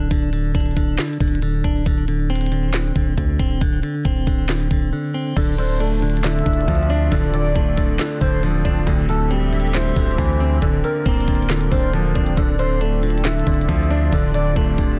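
A clean electric guitar opens this brooding, dark trap excerpt with fingered, compressed arpeggios, softened by a low-pass filter and trailed by delay, while a deep, sine-toned 808-style bass holds long decaying notes beneath it. An up-front electronic trap kit enters almost at once, with a knocking kick, sharp snare, crisp hi-hats, handclaps and crash cymbal, setting a half-time feel at 137 BPM in D minor. After a short break at 4.9 seconds, a dark, mellow concert grand piano joins at 5.4 seconds as the harmony moves from Csus2/D to Dm7, Am7/D and Bbadd9/D. A round, detuned synth lead with a sub-octave layer, vibrato, chorus and delay soon carries a second line, and a hollow, airy, flute-like pad with chorus sits in the background, holding sustained chords. The sound is dry, with a dense, heavily limited modern master.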